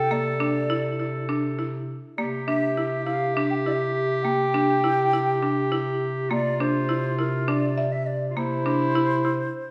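Restless and shimmering, this short excerpt of contemporary chamber music moves in a straight 7/8 at 204 BPM in C mixolydian, with a breathy, wooden flute carrying a distant, vibrato-tinged melody over an up-front clear clarinet second line, a roomy bass clarinet holding C3, and buzzing hard-mallet marimba arpeggios on a single Cadd9 chord, all in a moderate recital hall reverb before the ensemble stops at 9.5 seconds.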